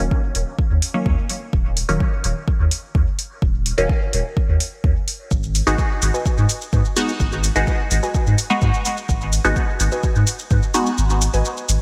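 Bright 1980s-style digital production with light reverb frames this deep, cavernous dub techno excerpt, where a layered kick and soft, round sub bass sit up front beneath metallic electronic hi-hat and shaker, muted, detuned chord stabs carry phaser, 12-bit sampler grit, dub echo and sidechain pumping, and from 5.7 s a warbling, lo-fi pluck with chorus and dub echo joins over an Abm7 chord before the kick drops out at 11.0 s.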